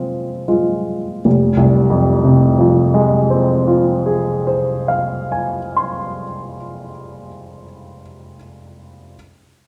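An F minor chord on a baby grand piano opens this brief excerpt, and the opening 1.2 seconds slow down before a new passage begins. It is a romantic nocturne for solo piano in 4/4, mournful and wistful, moving at a very slow 37 to 44 BPM with a freely flowing rubato feel. The piano's tone is warm and present, sitting up front as it spans the instrument from deep F1 bass notes to C6 in the treble. Around it, a wet recital hall reverb with a 1.6-second decay lends the impression of listening from further back in the room. The piano plays alone throughout its 9.2 seconds, and the piece is cut from a longer work.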